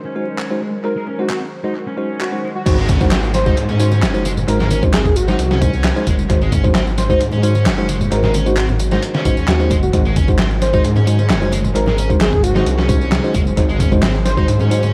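A warbling, nostalgic pad opens this gritty, swaggering breakbeat excerpt at 132 BPM in a straight 4/4, holding sustained chords over a G#7 harmony, joined almost at once by a thick, double-tracked fuzz guitar riff roughened by tube saturation, 12-bit sampler grit, a low-pass filter and tape echo. Bell-like stabs from a clean tine electric piano and layered electronic handclaps with tambourine fill in the opening moments, while an airy, dreamy lead sings a soft melody coloured by chorus, vibrato and a small-speaker tone. The drop lands at 2.7 seconds, when a dark, rumbling detuned saw bass sits up front beside a dusty, sampler-style soul drum kit with a thumpy kick, medium-tuned snare, hi-hat and crash, re-recorded in a large room. A very quiet electronic downlifter sweeps through until 6.3 seconds, and faint, hard-hand congas arrive at 2.9 seconds. Light reverb, an echo-heavy mix and a layer of vinyl crackle give the whole piece a lo-fi, vintage haze.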